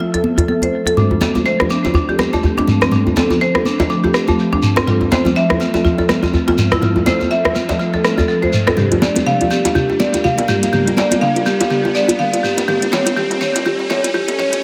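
A bright, woody marimba played with hard mallets sits up front, spinning arpeggios through a dub echo over an ethereal, airy pad whose detuned chorus and phaser shimmer beneath it in this hypnotic, earthy afro house excerpt at 123 BPM in D minor, moving from Fmaj7 through Dm7 and Gm7 to A7. High-tuned congas in the background, a small-room djembe and a distant, grainy shekere, both carrying tape echo, mingle with an electronic afro-pop kit of metallic hats, rim clicks and toms, while a very quiet, smooth gliding synth bass enters at 1.0 seconds. From 1.0 seconds the passage is a build-up, with an electronic riser arriving at 5.4 seconds and a drum fill from 8.8 seconds in an echo-heavy, high-passed mix.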